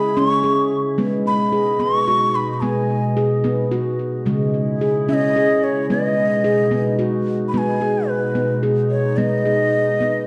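This gentle, hypnotic world meditative piece, cut from a longer work, moves at 73 BPM in a flowing 6/8 in G# minor, with harmony circling between C#m and G#m and a change of section at 7.5 seconds. A breathy, bamboo-toned bansuri sings the melody up front with a straight, slightly unsteady tone, while a ringing stainless-steel handpan plays soft fingertip arpeggios touched with delay, and a glassy, ethereal FM pad with ensemble chorus holds slow-blooming chords beneath. The production is dark and warm, bathed in a wet echo-chamber reverb.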